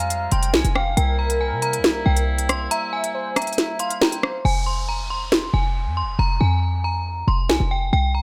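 A lightly reverberant, dark and cold drill excerpt at 138 BPM in a half-time 4/4 feel in F harmonic minor, where a metallic, inharmonic FM bell carries the melody over a punchy, tight 808-style bass and an up-front drum kit with a sharp snare and crisp hats, while a velvety detuned synth lead and a distant, roomy woodwind section holding sustained chords both drop out at 4.4 seconds, a break arrives at 2.7 seconds, and a downlifter sweeps in from 4.5 seconds as the hi-hats fall silent and the harmony settles from Fmadd9 and C7 onto Fm.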